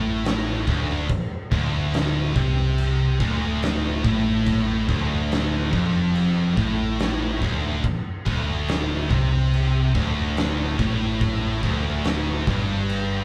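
Stoner and doom metal at a slow 71 BPM in straight 4/4, this brooding, sludgy passage in D minor is cut from a longer piece and sits on a single D minor chord throughout. Three distorted guitars grind out the riff from the start to 13.2 seconds: a bright, scooped, high-gain guitar that is double-tracked, and two fuzz guitars set back in the mix, one warm and one dark. Beneath them a picked electric bass, growly and punchy through tube saturation, holds down the low end an octave below the guitars. An oversized, low-tuned acoustic drum kit enters at 0.3 seconds and sits up front, with a punchy kick, fat snare and dark crash cymbals, its saturated, gritty sound rolled off at the top and ringing in a bright stone room. The band sounds as if playing live together in one room, with light reverb.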